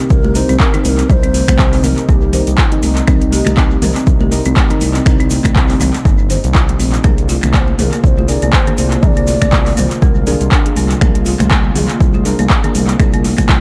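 Warm and hypnotic, this afro house excerpt in C minor at 121 BPM moves from Cm7 to Bb7/C over a punchy, overdriven electronic kick up front, a deep house kit of finger snaps, handclaps, metallic hi-hats and toms, very quiet hard-handed congas, a grainy egg shaker and a smooth sawtooth synth bass with portamento, while a woody marimba arpeggiates and a nasal, dark chord stab and a warbling, detuned analog pad pump beneath a breathy, hollow bass bansuri whose two short, gritty, echoing phrases float through a small, echo-heavy room.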